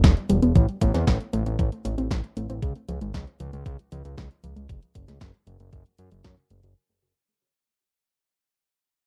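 A short, bittersweet italo disco passage at 116 BPM in straight 4/4, cut from a longer piece and fading out from the first second. It rests on a fat, thick analog bass, nasal and detuned, with saturated sawtooth and square-wave tones sitting up front. Alongside it, a dusty, warbling pluck plays arpeggios through chorus and tape echo; its lo-fi sound carries a noise layer and a filter sweep that keep it mellow and evolving. A thumpy, sampler-style electronic kick, overdriven and re-recorded in a small room with studio reverb, drives the groove until 6.3 seconds. A layered house kit adds hi-hat and a punchy snare. The harmony moves from Em to Am, then C#, then F#m, and the mix has the dry, close character of a 1970s-style studio recording, slightly detuned overall with A tuned to 441 Hz.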